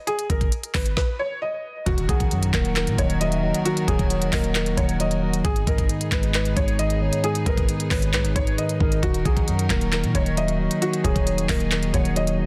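A half-time 4/4 trap groove at 134 BPM, with up-front drums (knocking kick, woody snare, crisp hi-hats and handclaps) and a boomy 808-style bass, carries this brooding, dark Eb minor hip hop excerpt, where a felt-muted upright piano sings a soft, intimate melody through a stop from 1.0 to 1.9 seconds, after which a mellow tine electric piano, distant bowed chamber strings and a very quiet electronic impact arrive, joined at 2.1 seconds by a hollow, woody clarinet-like synth lead with chorus, phaser and digital delay sitting in the background of a dense, heavily limited modern master.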